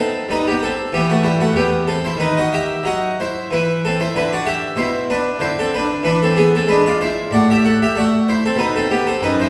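A close-miked Flemish-style harpsichord with three sets of strings sounds plucked, full and brilliant, heard up front and alone for the whole 9.5 seconds of this fragment from a baroque-style suite movement. The playing is grave and flowing with a free rubato feel, while the harmony moves through minor chords and a dominant seventh before settling back on B. The close instrument sits inside a reverberant church or concert hall acoustic.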